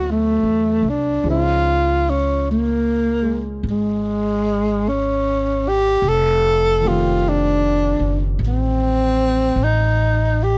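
Late-night and intimate, this slow jazz ballad fragment moves at 50 BPM in 4/4 with a gentle swing, drifting through D13, Dbmaj9 and F7 chords. A dark, breathy tenor saxophone carries the solo melody up front, its close-miked subtone whispered with vibrato, soft attacks and scooped notes. A woody, thumpy pizzicato upright bass on gut strings sits forward, while a natural-sounding baby grand piano stays in the background, all kept dry with little reverb.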